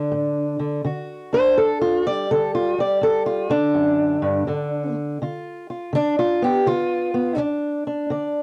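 A fingerpicked steel-string parlour guitar, boxy and up front with fresh strings, carries this gritty, laid-back acoustic country blues excerpt alone from 0.0 to 8.4 seconds at 82 BPM in a swung 4/4, moving through D, G5 and G#dim7 before dropping its chord accompaniment at 7.4 seconds, with light reverb and the character of a home cassette recording.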